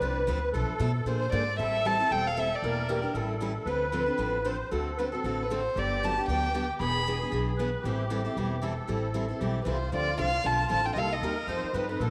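Acoustic string swing in the jazz manouche style, this excerpt races along at 230 BPM in A minor with a swinging, virtuosic mood. A picked steel-string acoustic guitar with a bright, fresh-strung sound sits up front as the accompaniment, joined throughout by a woody, thumpy upright bass played pizzicato on gut strings. A reedy musette accordion supplies a shimmering second line, its warm tone coloured by a boxy small room. The bowed violin carries the melody in three short phrases, entering at 1.2 seconds and returning at 5.4 and 9.6 seconds, with a dark, intimate sul tasto tone, light vibrato, a soft attack and tape echo. The harmony moves briskly through jazz chords such as Am7, Em7b5, A7 and Gmaj9, and a lush echo-chamber reverb with a long tail surrounds the ensemble.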